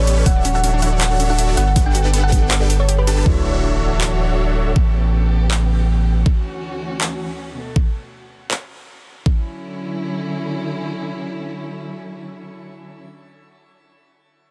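A thick, saturated sub bass and an overdriven, knocking electronic kick anchor this lush, playful future bass at 160 BPM in D major with a half-time feel, as huge detuned supersaw chords with phaser and tape echo, a round, tine-like thumb-piano-like synth pluck melody with chorus and digital delay, and punchy unison pluck arpeggios in the background ride sidechain pumping over expressive bowed chamber strings with vibrato and portamento, while a dubstep drum kit adds bright hats and handclaps, the supersaw gets a filter sweep as an impact and a very quiet sub drop land at 3.3 seconds, and a concert grand piano plays background accompaniment from 3.2 to 4.8 seconds.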